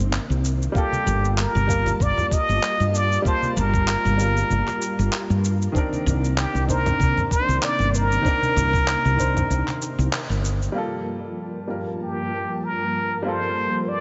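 Sunset chillout with a warm, wistful mood and a gentle swing, cut from a longer piece. A woody fretless bass sits up front with a dark, round, hollow-body tone, joined by gritty, compressed handclaps and cabasa, a thumpy sampler-style kick and low-tuned congas tucked in the background. A plunger-muted trumpet carries the jazz-style melody close and forward, its bright wah-wah voice trailed by digital delay, while an intimate baby grand piano with audible action noise and short sustain adds delayed accompaniment. A silky vintage string machine holds soft, slow-attack chords through an ensemble chorus, moving between minor ninth harmonies. The kick and congas fall away shortly before a band accent around 10.1 seconds. The bass, handclaps and cabasa then drop out, and the strings, piano and trumpet carry on as a filter sweep colours the string machine from 10.8 seconds to the end at 14.0 seconds.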